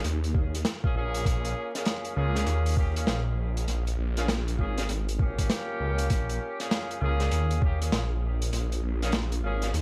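A thick, swirling detuned saw bass with tube-saturated grit opens alongside a crunchy breakbeat kit of gritty hi-hat and snare trailed by tape echo, an electronic kick enters with a pitched-down thump at 0.3 seconds and briefly drops out at 5.5 seconds, and mellow, vintage jazz-style horn stabs with light vibrato and sidechain pumping arrive at 0.8 seconds over a Bbm7 chord, giving this playful, swaggering swung glitch hop excerpt an echo-heavy studio reverb and vinyl crackle.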